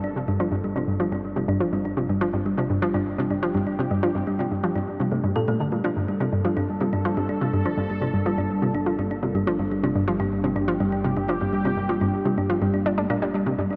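Hypnotic and expansive, this short cut from a longer piece of ambient, sequencer-driven space music in G minor moves at 124 BPM in straight 4/4 over a single Gmadd9 chord, as a bright, resonant sawtooth pad fades in across the full 13.8 seconds, a dark, tine-like FM thumb-piano pluck spins chorused arpeggios through tape echo, a nasal, detuned analog pluck sits up front with a wave-folded riff also fed through tape echo, and a very quiet, warbling analog drone hums on a low G beneath, the whole mix soaked in a dreamy cathedral reverb.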